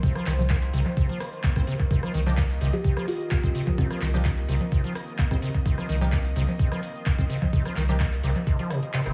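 A straight 4/4 pulse at 128 BPM drives this hypnotic acid house excerpt in C minor, anchored by a thumpy, overdriven kick up front that drops out near the end, along with a tape-warm drum machine of congas, handclaps, hi-hat, rim click and shaker. A squelchy, resonant square-wave acid riff with a filter sweep and a deep, round, wave-folded bass both pump against the beat beneath a smooth, warbling, detuned pad holding a Cm7 chord. A nasal, band-passed chord stab sits in the background, and a woody kalimba melody with 12-bit grit and dub echo rings out from 2.7 to 5.8 seconds, all within an echo-heavy small-room mix.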